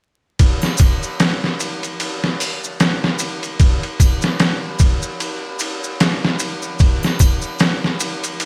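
Smoky and brooding, this short trip hop fragment, cut from a longer piece, rides a lazy swung groove in four. A sampler-style drum kit sits up front, pitched down, compressed and gritty, with a thumpy kick, a medium-tuned snare, hi-hat and ride cymbal, its sound carrying the character of being re-recorded in a small room. Behind it, maracas and triangle add acoustic, close-miked detail, joined by a group handclap, all kept in the background. Both parts play together from 0.4 to 8.5 seconds. Light reverb, a digital ambience and a layer of vinyl crackle give the whole piece a dusty, late-night air.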